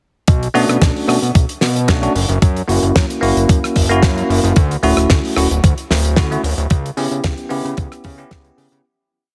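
The fat analog bass underpins this short nu-disco piece, a thick, detuned sawtooth-and-square tone with a nasal, saturated edge and fast attack, jumping octaves up front from 0.3 seconds. Set at 112 BPM in 4/4 with a light swing on the sixteenths, the track moves through Bm7, F#7, Dmaj9 and C#m7b5 in B minor, giving it a sleek, cosmic mood. A thumpy, sampler-style electronic kick drives a four-on-the-floor pulse and drops out at 8.4 seconds, while a damped 70s drum kit adds a dry, fat snare backbeat with closed and open hi-hat and rim clicks. From 0.5 seconds a bell-like tine electric piano plays syncopated, rootless chord stabs, bright and clean, pumping through sidechain and trailed by digital delay. The whole piece plays as one drop in a small room with light reverb, squeezed into a heavily compressed, radio-like sound, and fades out from 6.0 seconds to the end.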